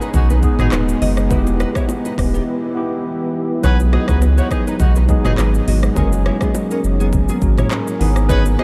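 A dreamy mix soaked in a huge ambient reverb gives this short afrobeats cut, lifted from a longer piece, a sunny, joyful glow at 103 BPM in 4/4 with a light swing on the sixteenths, in B major. Up front, an overdriven electronic afro-pop kit lays down a deep kick, metallic hi-hats, handclaps, rim clicks, shaker and toms, while a thick, saturated sine sub bass sits just as close. A clean tine electric piano carries the accompaniment. Behind it, a moody, detuned sawtooth pad with chorus holds sustained chords, and a fingerpicked nylon-string guitar plays a riff through analog chorus and delay, finger squeaks audible. A mellow, distant horn section adds a second line from 0.1 seconds, with soft-handed congas and bongos very quiet underneath. The harmony moves from G#m to Em, and a break at 2.5 seconds leads into a repeat of the opening section at 3.6 seconds, where the chords shift through B6 and F#add9 before landing back on G#m.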